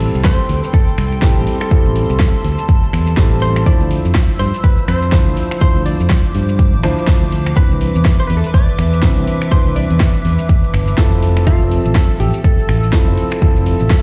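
Deep house at 123 BPM in A minor, deep and warm, with a swung 16th-note feel and a chord cycle of Am7, Dm9, Cmaj9 and Fmaj7 in this short cut from a longer piece. An up-front, tape-warm electronic kick enters at 0.2 seconds under a punchy fingered electric bass and a layered kit of finger snaps, metallic hats and a fat snare, joined by grainy, close maracas. Felt-muted upright piano stabs with digital delay pump alongside an airy, flute-like pad with chorus, while a dark, clean hollow-body jazz guitar plays the melody through dub echo, all set in a stone-room reverb that sounds like a big system in a bare space.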